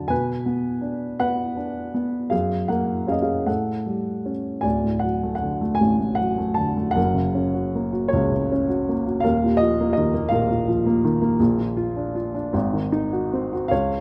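A dark, mellow baby grand piano sits up front in a moderate recital hall reverb, its boxy tone and short sustain giving the sound an intimate, close feel, with the action noise of the instrument clearly audible. This is calm, peaceful classical solo piano in a lyrical style, moving in 6/8 at roughly 51-57 beats per minute counted in dotted quarters, with a free, rubato pulse. The piano is tuned slightly low, to A4 = 438 Hz, and ranges from a deep D1 up to A5. The harmony drifts through unexpected colours, moving from C-flat minor through G-flat with an added ninth to A7 in the short opening passage. At 4.7 seconds a longer second passage begins on D and wanders through F-sharp, E-flat suspended second and B-flat before resting on G-sharp 7. The excerpt is cut from a longer piece and ends at 14.0 seconds.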